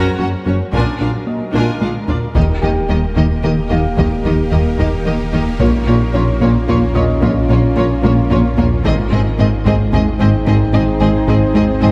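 A brooding, relentless hybrid orchestral and electronic film score in a straight 6/8 opens with a round analog bass riff, soft pluck arpeggios, a swarming, granular drone, background violins and violas, and a hushed cello and double bass section, while a felt-muted upright piano with tape echo adds intimate texture, its action noise audible, until 8.9 seconds. Quiet taiko ensemble drums struck with hard sticks join at 0.7 seconds, and a fill leads to 2.4 seconds, where a lush, vibrato-rich violin melody enters over mellow French horn chords, a dark solo tuba and a deep, full sub bass. The close-miked horns and distant violins sit inside a moderate scoring-stage reverb that gives the whole a spacious, cinematic weight.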